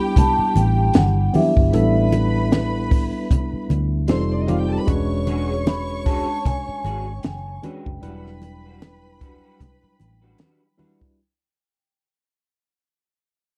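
Lush 1970s-style soul at a silky, smooth 76 BPM in E dorian, with swung 16ths and chords moving from Em9 through A9sus4, F9 and E13 as the excerpt fades out. A ringing vibraphone with soft mallets and tape echo carries the melody over a bowed, sul tasto string section, a worn, slightly out-of-tune tine electric piano with light overdrive, and a dark, foam-muted fingered bass. An up-front cocktail drum kit with a punchy kick and high-tuned snare sits ahead of soft-handed congas in the background, and at 5.3 s a twangy, lo-fi electric guitar through a small old amp adds a quiet riff with ensemble chorus, all in a dry, close studio sound.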